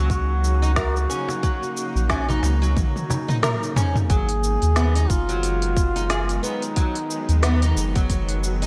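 Mystical and warm, this organic downtempo piece moves at 90 BPM in G# dorian with a gentle 16th-note swing, as a duduk sings a folk-style melody full of vibrato through delay over a plectrum-plucked, fretless oud whose double strings ring out in echoing arpeggios. Beneath them, a tense, string-like drone with a slow attack and a ring-modulated edge sustains chords in its own reverb, while a round, deep analog bass sits up front, both pumping with the sidechain. A tight electronic kick and a produced kit of woody snare, smooth hats, shaker and toms in gated reverb drive the groove, a vintage, band-limited cajon enters in the background at 1.3 seconds, and a drum fill from 2.8 seconds leads into the change from D#m7 to G#m7 at 4.1 seconds, set in a bright 1980s-style digital production with light reverb.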